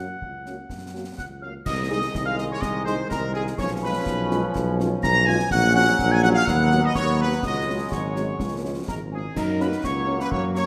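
A proud, rousing military-style march for wind band, heard as a short cut from a longer piece, strides along at 125 BPM in a straight 2/4, moving from Db major into F# major from 5.5 s. A clear, tight trumpet section carries the melody over a mellow French horn section kept very quiet in the accompaniment, while an up-front solo tuba with a smooth top anchors the bass. Concert bass drum, concert snare drum and dark clash cymbals enter at 0.2 s with a close, dry acoustic sound, and a hollow wooden piccolo, pure and crisp in attack with vibrato, adds a high second line from 1.2 s. A warm trombone section joins at 1.7 s with distant, roomy sustained chords touched by light vibrato, and a solo euphonium slips in as a background second line at 7.9 s. The harmony passes through chords such as Ab/C, Db7/Cb and C#sus4 before settling back on F#, all set in a wet recital hall reverb.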